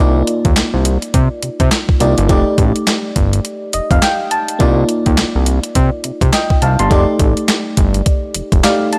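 Confident and bouncy, this short excerpt of new jack swing R&B struts along with a swung sixteenth-note feel over a looping move between Cm11 and F13. A glassy FM electric piano with a bell-like attack and chorus-tinged warble carries the chords throughout, dropping in fills at 3.4 and again at 8.4 seconds. Underneath, a fat, detuned sawtooth analog bass with a saturated filter pluck sits up front, holding the low end until 8.6 seconds. The crisp 8-bit drum machine enters at 0.3 seconds with a thumpy kick, medium-tuned snare, handclaps and hi-hat, its sampler-style hits pushed hard by overdrive. A digital ambience surrounds the parts, giving the punchy, close mix a sense of space.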